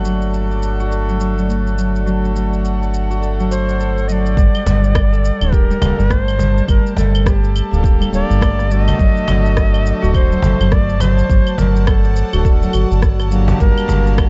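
Organic downtempo at 104 BPM with a swung 16th feel, meditative and earthy, cut from a longer piece. Fingerpicked, ringing Celtic harp arpeggios and a reedy, breathing hand-pumped harmonium with tape echo sit over a round, deep analog bass, while a soft, warbling pad carrying a filter sweep and a drifting, glassy harmonics texture hover in the background beside electronic shaker, claves and rim click. A bright cedar flute with chiff and vibrato takes the melody from 3.5 seconds. At 4.4 seconds a layered, deep electronic kick joins, and a distant, woody cajon follows at 4.7 seconds, all within a dark, small-room production.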